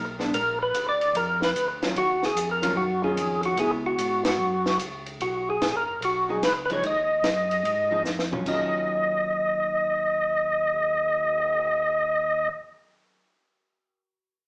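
A bluesy, late-night soul jazz organ trio groove in Eb minor, swinging at 148 BPM in 4/4, cut from a longer piece. Up front, a fat, percussive tonewheel organ carries the melody with key click and third harmonic percussion, its tone colored by chorus vibrato and a slow rotary speaker. A second tonewheel organ holds down the bass in a round, dark register, lightly overdriven and also turning through chorus vibrato and slow rotary, while a clean, hollow-body archtop guitar adds picked accompaniment and rings on until 13.2 seconds. A compact cocktail kit with dry, dark cymbals, a high-tuned snare and a punchy kick supports the band, which hits an accent at 4.2 seconds, and the drums play a fill just before the section change at 8.5 seconds, where the harmony returns to Ebm9. The sound sits further back in the room with a wet studio reverb and a small-speaker character.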